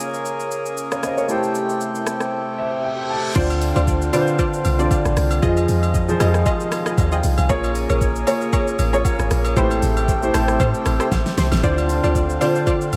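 Set in 4/4 at 116 BPM with a 55% swing on the sixteenths, this deep, soulful amapiano excerpt in D minor moves through Bbm7, Am7, Dm7 and Fm7 chords. A smooth R&B drum kit plays throughout, electronic and produced, with a soft kick, fat snare, warm hats, rim click, shaker and crash. The opening pairs a grand piano, treated with lush chorus and a low-pass filter, with a reedy, breathing pedal harmonium under a filter sweep, and the piano plays a fill just before an electronic reverse cymbal enters at 2.6 seconds. At the drop at 3.4 seconds, a deep, round, dark log drum bass arrives up front, percussive with a fast attack and decaying tail. Punchy detuned sawtooth and pulse-wave chord stabs with chorus and delay sit in the background, alongside close, dry agogo bells, woodblock, egg shaker and group handclaps. A drum fill at 11.1 seconds marks the turn back to Dm7, all of it bathed in a huge, dreamy ambient reverb.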